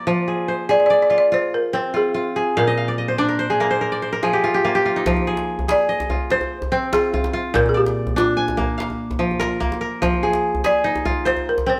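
West African traditional music in a flowing, reflective 12/8, cut from a longer piece. A bright, fingerpicked kora plays ringing arpeggios up front from the start and adds a fill between 2.6 and 5.1 seconds, while a woody balafon struck with rubber mallets carries a round, dark melody from 0.7 seconds. A tight, cracking djembe joins at 5.1 seconds as the opening section repeats, with the band playing live together in a stone room whose reverb lends a wet ambience.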